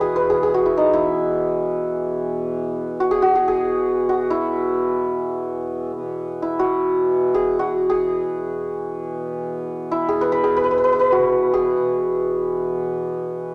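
Radiant and serene, this excerpt from a longer Hindustani classical performance unfolds in free time, cut from within a raga hamsadhwani rendering. The santur carries the melody from start to finish, its hammered strings bright, shimmering and ringing, placed up front and moving between D#4 and B4. Beneath it, a hand-pumped harmonium holds a low drone between E2 and B2, reedy, warm and nasal with a breathing quality, sitting well back in the balance. The two parts sound together for the full 13.5 seconds, and the melodic material returns to its opening idea at 5.9 seconds. A wet club reverb with a 0.7-second decay surrounds the instruments.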